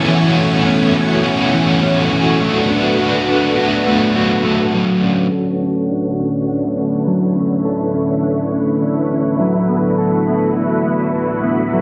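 A biting, overdriven guitar with tremolo and subtle chorus opens this hazy, melancholic dream pop excerpt in B minor at 103 BPM, alongside a lush, vintage sawtooth string machine holding slow-attack chords and a dark, clean, fingered electric guitar playing arpeggios through analog chorus, delay and a low-pass filter. A filter sweep begins at 4.7 seconds as the harmony moves from F#m7/B and Bm7 to Bm9 and then D69, and the overdriven guitar drops out at 5.3 seconds. A wet recital-hall reverb gives the string machine and fingered guitar a blurred, spacious glow through to 11.8 seconds.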